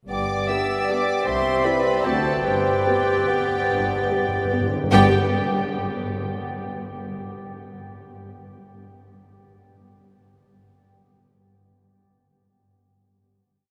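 A festive, elegant orchestral ballroom waltz in 3/4, played with rubato, that opens and closes as a complete miniature within about six seconds, ending on a held final chord. A pure, floating symphonic violin section carries the tune, with chamber violins doubling it at the octave in the background, an airy flute doubling it in sixths and unison, and a distant oboe, mellow clarinet and clear bassoon sustaining chords. Rich cello and double bass sections bowed sul tasto hold the bass, a dark, woody viola section and a very quiet horn section join at 0.5 s with after-beat chords, and round, dry timpani add a fill from 2.4 s, all set in a cathedral reverb.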